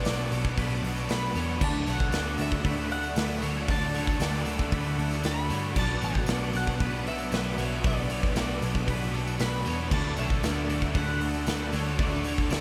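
Shoegaze and dream-pop rock at 116 BPM in 4/4, this dreamy, hazy passage in D major is cut from a longer piece and sits deep in a cathedral-sized reverb that soaks the whole mix. A big rock drum kit arrives at 0.1 s and stands up front, with a punchy kick, medium-tuned snare, bright crash and hi-hat, while a jingly tambourine sits very quiet beneath it. The vintage muted picked bass is dark, round and amped, anchoring a slow harmonic sway between Bm7 and Dadd9. Behind it, three guitars grind out riffs: a thick fuzz guitar with distortion and ensemble chorus, an overdriven, compressed guitar trailed by reverse reverb, and a faint, double-tracked distorted guitar. Higher up, a scooped, twangy clean guitar spins arpeggios through chorus and diffuse ambient delay, and a shimmering, sawtooth string-machine violin pad holds soft-attack chords in the background. Through it all, a double-strung mandolin picks a warm melody between D5 and B5 that blurs into its own diffuse delay.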